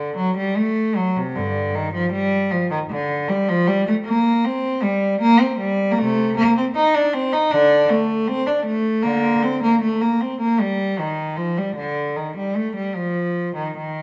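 Classical, baroque-style suite movement for unaccompanied cello in G minor, an introspective and solemn 14-second excerpt at 78 BPM in 4/4 with a rubato feel, where a single bowed, period-style cello with a rich, nasal, reedy gut-string tone and light vibrato ranges from G2 to Eb4, set up front in a wet stone room reverb.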